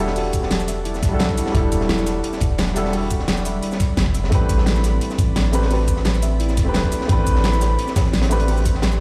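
Heard as if through a big sound system in a bare stone room with light reverb, this dreamy, lush liquid drum and bass excerpt at 173 BPM in E minor moves from Em11 to Am11 over a deep, up-front sine 808-style bass, a dark, mellow baby grand piano with delay, an ethereal, airy pad with ensemble chorus and phaser sitting in the background, a ringing, harp-like synth pluck arpeggiating with chorus and delay, a knocking electronic kick, a pop kit with fat snare, crisp hats and cabasa, and a gritty, saturated breakbeat kit with a high-tuned snare and rolled-off top.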